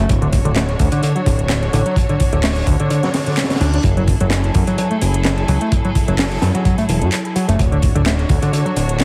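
This gritty, energetic breakbeat cut opens with lush bowed strings holding sustained chords under sidechain pumping, a growly, overdriven picked electric bass riff with tube saturation and dub echo, and a fat, detuned sawtooth bass, joined at 0.1 seconds by an up-front, crunchy breakbeat kit with a punchy kick and high-tuned snare, plus a layered house kit of metallic hats and handclaps, swung on the sixteenths, while a very quiet reverse cymbal appears at 3.3 seconds as the chords shift from Dmaj7 to F#m9, the mix heard through a heavily compressed, radio-like small-room sound.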